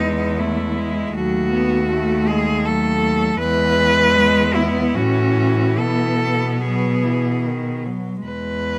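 Serene and lyrical, this short classical passage for cello ensemble in E major moves in a rubato 3/4 at 72-81 BPM, with a rich, intense lead cello carrying the melody up front with vibrato and a smooth top, a second cello playing sul tasto with an airy bow and light vibrato for an intimate inner line, a third cello adding expressive accompaniment with soft attacks and portamento until 7.8 s, and a bass cello grounding the harmony with vibrato and gliding portamento, all captured close and dry in detailed sound.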